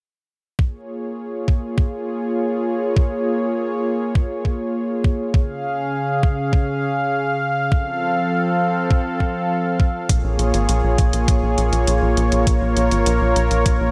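A detuned sawtooth analog pad with chorus and sidechain pumping holds slow-blooming chords over a thumpy, up-front electronic kick from 0.6 s in this cinematic, nocturnal synthwave passage, with a punchy, plucked sequencer bass and a sampler-style electronic hi-hat joining at 10.1 s, all bathed in a lush, dreamy hall reverb.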